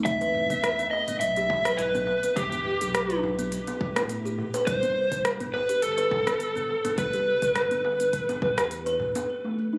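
A dark, overdriven slide guitar opens this mystical, hypnotic slice of organic downtempo, sitting up front and carrying the melody with a trail of delay. It arrives together with a round, sine-like sub bass that pumps under sidechain, a deep, layered electronic kick, and a tape-warm produced kit of crisp hats, rim clicks, shaker and toms, the kit softened by low-pass filtering and re-recorded in a large room. Moments later a woody, hollow-toned kalimba adds soft, short arpeggios through a filter and digital delay, while a metal-shell darbuka played with soft hands sits quietly in the background. The groove moves at 104 BPM in 4/4 with a gentle swing on the sixteenths, and the harmony shifts from E5 to a Cmaj7 voicing at 4.7 seconds. A lush hall reverb and compression glue it together, though the capture has the roomy character of a phone recording made in the room, with a club reverb, and this short cut from a longer piece ends at 9.8 seconds.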